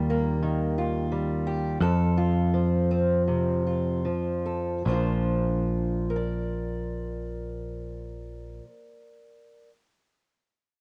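A bright, amped electric bass sits up front in this short folk piece, its picked notes holding the low end until it drops out at 8.6 seconds. Beside it, a fingerpicked acoustic archtop guitar plays the accompaniment, its warm tone colored by a cassette tape character and carrying on to the close at 9.7 seconds. The mood is anthemic and hopeful, in Bb major and 4/4 with a straight feel, and the tempo sits between 72 and 90 BPM, slowing down through the opening 4.9 seconds. The harmony moves from Ebadd9 to F, then settles on Bbadd9 as the second passage begins. Light reverb and a homemade cassette recording give the fragment an intimate, lived-in sound.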